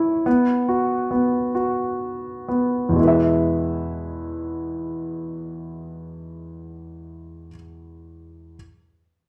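A smooth, vintage-toned concert grand piano sits up front with deep bass and short sustain, playing tender, heartfelt pop accompaniment in 6/8 that slows over the first 3 seconds as it moves from B5 to E, bathed in the wet reverb of a large studio in this brief fragment of a longer piece, which ends at 8.6 seconds.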